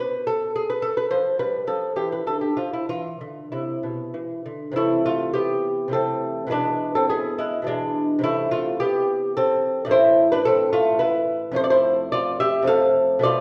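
Set in the lingering reverb of a church or concert hall, this brief passage from a longer piece is a solemn, grave baroque-style dance in A minor and 3/4, where a solo lute sits up front, its delicate, fingerpicked gut strings in doubled courses, some octave-doubled, moving with rubato at around 93-111 BPM through harmonies such as Fmaj9#11, Dm, E7/B and Am before coming to rest on F.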